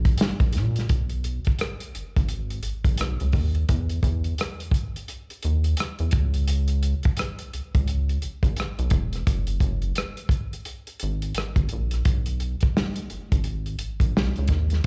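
A relaxed 4/4 groove at 86 BPM, with the sixteenths swung at 60%, drives this short neo-soul and R&B cut from a longer piece. The bass starts at 0.0 seconds and the drums follow at 0.1 seconds, and the two play together until the close near 14.9 seconds. The bass is a rubbery square-wave synth with a hollow, wave-folded character, a fast filter pluck and a dark, resonant body, ranging from E1 to A#2 and sitting up front. The acoustic drum kit is dry and muffled, with a rolled-off top, a tight kick, a medium-tuned snare, rim clicks and hi-hat giving it a lo-fi soul feel. The whole performance comes across like a live gig heard through the venue's PA with a touch of club reverb, keeping the mood soulful and laid-back.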